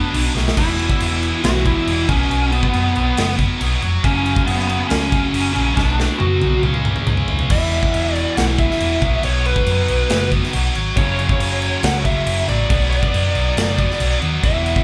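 Driving and heavy, this hard rock excerpt moves at 138 BPM in a straight 4/4, cut from a longer piece and running about 14.8 seconds through two passes of the same section. A biting lead guitar carries the melody from B3 to F#5, its overdriven, picked tone sitting warm over the band. Beneath it, two picked rhythm guitars play the riff in the same low register, one heavy and high-gain, the other tight and bright with distortion, while a fingered electric bass adds a dark, round, punchy bottom. A big acoustic rock kit, airy and polished, sits up front with a punchy kick, medium-tuned snare, crash and toms, opening with a quick fill at 0.4 seconds and rolling through a longer fill from 5.8 to 7.5 seconds. The chords cycle through Bm, E5, B5 and F#5 with a turn to C#5, and the whole band sounds as if playing live in one large studio room with a moderate reverb.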